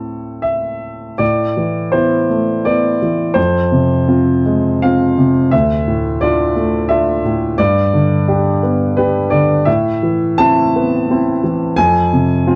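Wistful and melancholic, this short passage of neoclassical minimalist piano is cut from a longer piece and moves at 85 BPM in 3/4, with uneven beats and a rubato feel in A minor, tuned to A4 = 444 Hz. A warm baby grand piano plays solo from 0.0 to 12.6 seconds, ranging from D2 up to A5, its boxy tone sitting up front. After a brief opening on A minor, the harmony settles into Amadd9 at 1.2 seconds, then drifts through F minor, Dmadd9 and G before returning to Amadd9 and closing on F minor at 11.8 seconds. Light reverb and a dark, warm production frame the instrument.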